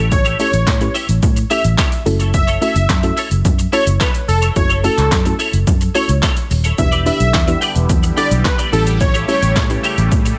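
Dance-pop at 108 BPM with an energetic, bittersweet mood: a punchy analog drum machine drives kick, snare, handclaps, hi-hat and shaker up front alongside a dark, foam-muted fingered bass, while a twangy, bright twelve-string electric guitar riff and a soft, round chorused pluck ride over A7, F#m7 and Em7, a thick, detuned unison lead with vibrato and delay carries the melody, a grainy egg shaker sits distant in the background, and an airy, evolving resonant pad joins at 6.8 seconds in this dry, pumping mix.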